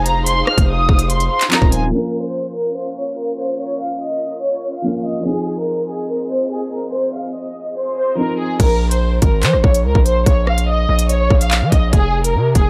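A murky, filtered production frames this tense, brooding half-time drill excerpt, where a soft, felt-muted upright piano with audible action noise accompanies a woody, bowed studio string section holding sustained chords beneath a lush, vibrato-laden symphonic violin melody touched with delay, while a heavy, saturated 808-style bass and an up-front electronic drum kit of hard-clipped kick, crisp hats, handclaps, rim clicks and crash fall out by 1.9 seconds for a filter sweep before returning at 8.6 seconds as the piano and strings stop.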